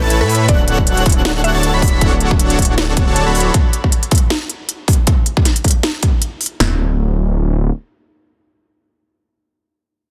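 Swung sixteenths at 157 BPM in 4/4 ride a half-time feel in this lush, playful future bass fragment in D major, cut from a longer piece and opening straight into a drop. A huge, bright supersaw riff voices a Dmaj7 chord, while a thick, saturated detuned saw bass sits up front underneath, both pumping with sidechain. In the background, a woody, round mallet-like FM pluck carries the melody with tape echo and chorus, and an airy, dreamy lead with vibrato spins high arpeggios above it. Two up-front drum kits drive the groove: a trap kit with a sharp snare and crisp hats, and a layered big-room dance kit with a punchy kick, snare and toms, re-recorded in a large room and given a tape-warm tint. The supersaws and bass stop at 3.5 s, the drums carry on until about 6.7 s, and the bass returns at 6.6 s for a new section, briefly overlapping the final moments of the big-room kit. Digital ambience surrounds the mix, and the master is dense and heavily limited.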